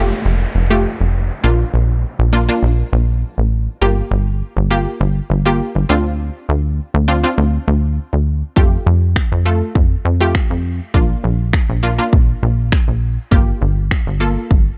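Euphoric and upbeat, this dance-pop excerpt moves at 101 BPM in a straight 4/4, cycling through Fadd9, Bb, Gm7 and Dm7 with a dry, up-front sound. A bright, lush, detuned unison pluck carries the chords over a funky, wave-folded analog bass, both pumping with sidechain, while an electronic downlifter sweeps through the opening until 3.8 s. At 8.6 s a punchy, layered pop drum kit enters with finger snaps and kick drum.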